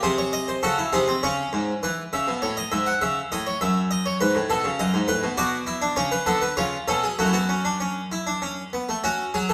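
A harpsichord, up front and full with two sets of strings in the Italian style, carries this stately, elegant baroque-style fugue in three parts, its plucked tone spanning F#2 to F#5. Set in F# minor at 100 BPM in a straight 3/4, the fragment moves from a brief opening into a longer second section at 1.8 seconds, with harmony passing through C#m, F#m, a diminished chord and Bm9 over C# before settling on F#m at 7.2 seconds. A reverberant stone room adds a 1.2-second tail around the instrument in this short cut from a longer piece.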